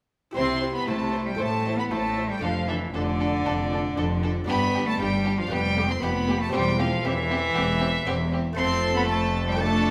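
A wet recital-hall reverb surrounds this lively, festive baroque-style concerto movement with solo episodes, heard here as a section cut from a longer piece. Up front, a single rich cello with gut-string tone and light vibrato carries a reedy melody, while a chamber violin section plays its own melody high above with a smooth top. A second violin line and a dark, distant viola section sit in the background, and a close cello section joins a double bass section on the bass in period style. A delicate, bright, fingerpicked lute with double strings stays in the background from 0.3 seconds, just before the bowed strings enter at 0.4 seconds. The harmony moves from C through Am and Dm/F to G5 and G7/F, settling on C/E before reaching F at 8.6 seconds.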